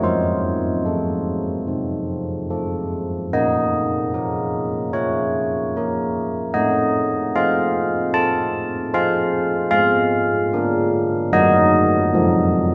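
In a straight 4/4 at 74 BPM, this solemn, wintry classical tune in Bb minor gives a solo carillon of bronze bells, mellow and up front with a padded clapper and ringing minor-third overtone, ranging from F3 to A5 through a wet concert-hall reverb over a chord path from F through Bbm and F/A to a closing F7 at 12.2 seconds, cut from a longer piece.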